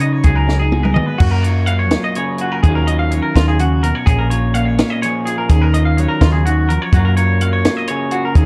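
Math rock and midwest emo in a straight 6/8 at 84 BPM, this short cut from a longer piece sits in F# major and feels playful yet wistful. A compact cocktail drum kit sits up front with a punchy kick, a high-tuned snare, dark hi-hat and crash cymbals, and toms, and it plays a fill from 0.5 to 1.2 seconds that carries the opening into the main section. A hollow-body short-scale electric bass, picked and round, anchors the low end with an amped, up-front tone. An electric guitar through a small old amp supplies slightly broken-up, bright accompaniment, while a second, twangy, clean and compressed electric guitar spins arpeggios higher up, bathed in spring reverb. The chords drift from C#9sus4 through F#maj7, D#m9 and A#m7, all wrapped in a dusky, light-reverb production.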